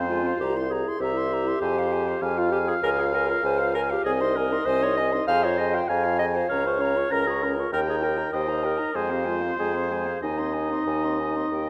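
Classical-period wind quintet music in Ab major, a quick, spirited movement at 98 BPM in a straight 4/4. It is cut from a longer piece and runs about 11.7 seconds. The silver flute carries the melody with a pure, crisp-edged tone, while the oboe adds a smooth second line with light vibrato. The mellow clarinet and the distant, roomy French horn fill in the accompaniment, and the clear bassoon sits up front on the bass, all set in a moderate concert hall reverb.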